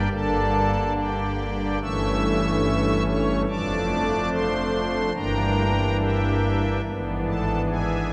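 A long, wet cathedral reverb surrounds this brief excerpt of a dark, grave chorale-style classical piece, heard from further back in the room. A solo pipe organ on its strings celeste stops carries the music in a free rubato: its soft, shimmering tone and romantic voicing sit up front and span a range from F1 to E6. The harmony moves from Gm through A7/G, Dm/F and Em7b5/G, arriving on E7/G# at 6.8 seconds.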